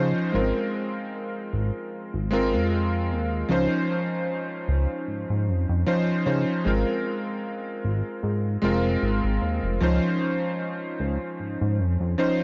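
Vaporwave at 76 BPM in Ab major, nostalgic and woozy, with a light 16th-note swing, cut from a longer piece that rocks between Ab69 and Dbmaj9 chords. A bright, clangy electric grand piano sits up front with analog chorus and dub echo, while a glossy, chorused synth bass built from pulse and sawtooth waves, plucked and then sustained, holds the low end. The echo-heavy mix has a cassette-tape haze, dulled top end and a light digital reverb, giving the roughly 12-second clip a faded, retro sheen.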